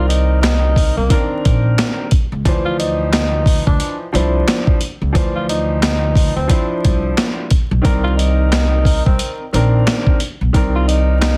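Tough and reflective, this boom-bap hip-hop clip moves at 89 BPM in 4/4 with a 16th-note swing, cut from a longer piece and tuned slightly low to A4 = 437 Hz. A breathy tenor saxophone carries the melody in a clear, jazz-style solo voice between Bb3 and F4, its subtone colored by vibrato and scooped notes and shaped by high- and low-pass filtering. A baby grand piano accompanies with an open tone and long sustain, run through cassette tape and filtering, while a woody, growly pizzicato upright bass with steel strings sits up front in the low register. The gritty, compressed sampler-style drum kit enters at 0.1 seconds with a thumpy kick, high-tuned snare, handclaps and hi-hat, re-recorded in a large room and placed prominently. Harmony moves from Cm9 to Dm9 at 2.5 seconds and back to Cm9 at 7.8 seconds, all under light reverb, vinyl crackle and a dense, heavily limited modern master.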